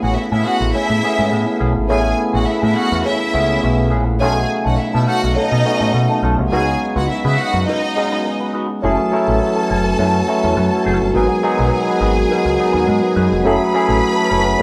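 A driving, danceable disco groove at 104 BPM in F# dorian opens with the full band at once: a deep, round dub bass picked up front, a barky tine electric piano through a combo amp, a dark, clean electric guitar with wah in the background, mellow vintage French horns holding sustained chords, and a lush, close string section with vibrato carrying the second line. A short break comes at 7.7 s before the second section begins at 8.8 s, moving from Amaj9, B9 and C#9sus4 to F#m7 and G#m7. The band sounds live in one room, wrapped in wet studio reverb, in this excerpt from a longer piece.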